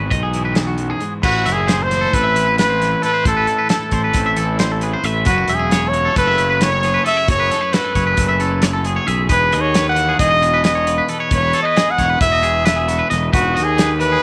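This bright, playful math rock and midwest emo excerpt opens with a twangy, compressed twelve-string electric guitar sitting in the background. Alongside it are twangy, clean arpeggios on a second electric guitar with tremolo, and a growly fuzz bass played with the fingers and pushed up front through overdrive. A loose indie kit joins at 0.1 seconds, its tight kick, medium-tuned snare, hi-hat and crash recorded acoustically in a small room and placed close to the listener. The pulse runs at 268 BPM counted in eighths, in a straight 9/8 that gives the groove its lopsided character. At 1.2 seconds a clear, punchy trumpet takes the solo melody up front, pop style with a light vibrato. Underneath, the harmony moves from Emaj7/G# through Amadd9 and F#m11 before settling on Emaj7. The whole mix carries a touch of light reverb and studio ambience.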